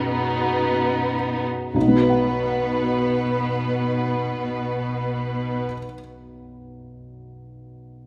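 Hopeful and tender, this brief cinematic fragment in a rubato 6/8 opens by slowing down over its first 1.7 seconds, with a felt-muted upright piano, soft and intimate with audible action noise, carrying the accompaniment until 8.1 seconds, while a focused violin section with vibrato plays a second line and a lush, smooth cello section holds a low B in the bass, both strings falling away near 5.7 seconds inside a moderate scoring-stage reverb.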